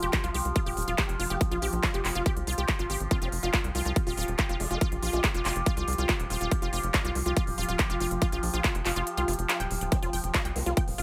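In a straight 4/4 groove, a punchy, overdriven electronic kick and a crisp, overdriven big-room kit of handclaps and hi-hats propel this driving, alien psychedelic trance cut, the kick dropping out from 9.1 to 9.9 s, while a tight, dark sawtooth sequencer bass, a lush, detuned unison pluck riff with delay and sidechain pumping, and a nasal, resonant drone of sustained chords with moving overtones, chorus and pumping fill out the dry mix, and a very quiet, saturated formant-sweep wobble bass surfaces as a second line at 3.1 s.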